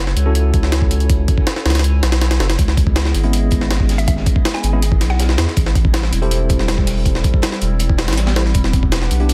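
A dense, heavily limited modern master with digital ambience frames this nostalgic, moody drum and bass cut at 161 BPM in C# minor, driven by an up-front deep, thick saturated sub bass and a gritty, pitched-up sampler-style jungle kit with overdrive, a thumpy kick that briefly drops out early on, and a high-tuned snare. A clean tine electric piano plays stabs through dub echo over minor seventh chords, and at 2.6 seconds a crunchy acoustic breakbeat kit joins in the background, dark and smooth with a rolled-off top and high-pass filtering. A woody, round mallet-like synth pluck with chorus, phaser and dub echo surfaces from 4.0 to 5.4 seconds.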